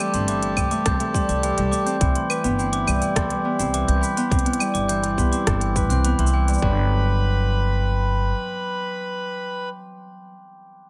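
This hopeful, playful folktronica moves at 104 BPM in a straight 4/4 in G major. A fingerpicked Celtic harp rings out arpeggios through delay, over reedy, breathing harmonium chords and a woody, thumpy pizzicato upright bass on gut strings sitting up front. A mellow glockenspiel struck with soft plastic mallets adds a bell-like second line through tape echo. The chords move from Am7 to Cmaj7, and at 6.6 s the music shifts to Gmaj7. Around there the tight, tape-warm electronic kick and an organic electronic kit of cabasa, claves, crisp hi-hat and rim click drop away. The bass carries on to 8.3 s and the harmonium to 9.7 s, while the harp rings on until 10.3 s in a small room with a softened top end.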